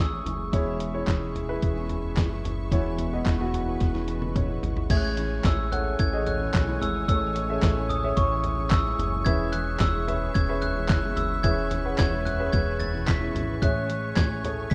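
This rough home demo mix has a small-room feel with light reverb, and this hopeful, anthemic piano-driven pop cut is taken from a longer piece. A warm concert grand piano carries the accompaniment throughout, intimate and natural with deep bass and audible action noise, while a full-bodied jumbo steel-string acoustic guitar plays a picked riff with the odd finger squeak. Beneath them a retro chorused synth bass mixes pulse-wave and sawtooth tones with a quick filter pluck, and a clear symphonic string section holds lush, bowed chords with smooth vibrato, sitting further back. The lo-fi sampler-style drum kit enters at 0.3 seconds, up front and muffled, pitched down and compressed, with a thumpy kick and fat snare among hi-hat, handclaps, toms and crash. A drum fill and a piano fill lead into the second section at 4.9 seconds, where the glockenspiel, struck with soft plastic mallets and heard only briefly at the very start, returns with a ringing, bell-like melody over chords moving between Amaj7 and E6.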